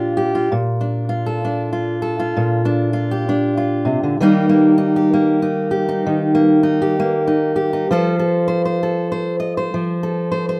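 Hopeful and gentle, this short folk excerpt features a lone fingerpicked steel-string acoustic guitar playing across its full 10.6 seconds at a relaxed 65 BPM in 4/4. The eighth notes carry a light swing, giving the unhurried pulse an easy sway. Set in Bb major with tuning slightly below standard pitch, the guitar moves from Bbmaj7 to Eb at 4.2 seconds and on to F at 7.9 seconds, spanning a range from Bb2 up to Eb5. Its tone is warm with an auditorium-like body, placed up front so that small finger squeaks on the strings come through clearly. A light reverb surrounds the instrument, lending the intimate performance a touch of space as the passage is cut from a longer piece.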